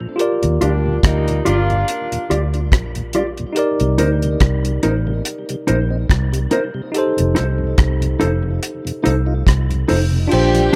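Light reverb and studio ambience frame this smooth, sweet lovers rock reggae fragment, where a dry acoustic drum kit with tight kick, hi-hat, rim click and crash and a round, foam-muted fingered electric bass sit up front beneath clean, compressed electric guitar stabs, a worn, slightly out-of-tune tine electric piano and a background tonewheel organ with key click, slow rotary speaker and tape echo over Ebmaj9, Cm7 and F7 chords, while a distant horn section with tape echo adds a second line from 0.6 to 2.3 seconds and returns alongside a lush, bowed string section at 10.3 seconds.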